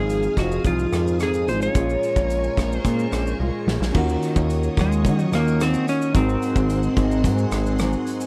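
A straight 4/4 pulse at 109 BPM drives this lonely, wistful indie and bedroom pop excerpt in Eb dorian, where a slightly broken-up electric slide guitar with tape echo carries the melody over a fat, detuned analog bass, a loose, up-front indie drum kit with a tight kick and a pumping small-room sound that plays a fill from 3.4 to 3.9 seconds, a fingerpicked jumbo acoustic guitar with lush chorus and warbly pitch drift, a worn, slightly out-of-tune tine electric piano, and shimmering vintage string-machine violins, all in a dry room as the chords move from Fm7 through Bbm7 to Ebm7 and Ab7.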